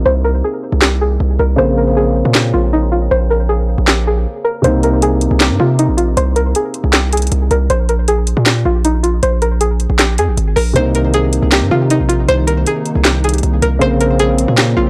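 A heavy, aggressive distorted 808-style bass drives this menacing, brooding half-time trap excerpt, joined by a twangy, string-like resonator pluck melody with chorus and tape echo, an up-front electronic kit of sharp snare, metallic hi-hats and handclaps, and dark, mellow concert grand piano chords that drop out at 7.7 seconds and return at 10.7, as a hollow, flute-like pad settles into the background, the whole mix blown-out and overdriven with light reverb and a filter sweep running through the opening break.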